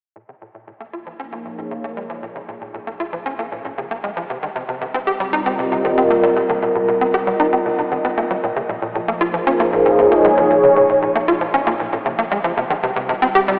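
Ambient, sequencer-driven space music with a hypnotic, cosmic mood, where a detuned, resonant pad sustains chords alternating between Bbm and Cm over a tight, punchy sequencer bass riff with a nasal filter pluck that fades in through the first 8.4 seconds, while a very quiet analog drone with pulse-width modulation slips in at 2.0 seconds, all steeped in a lush hall reverb and the warbling pitch drift and telephone-like thinness of worn cassette tape in this excerpt cut from a longer piece.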